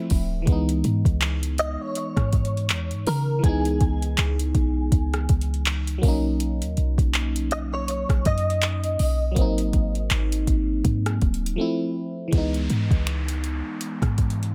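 Sensual and longing, this contemporary R&B piece moves at 81 BPM in C# dorian with a swung 16th-note feel. It is built on a glassy FM electric piano treated with chorus and phaser, a deep, boomy 808-style bass, and an up-front electronic drum kit of soft kick, metallic hi-hat, finger snaps, handclaps and rim click. A clean, compressed, direct-recorded electric guitar carries the melody from 1.6 to 11.6 seconds through ensemble chorus and delay, over chords moving from C#m9 through Bmaj9 and G#9 to Fmaj7, and after a brief break a downlifter enters at 12.3 seconds as the harmony returns to C#m9 in a dry, close mix.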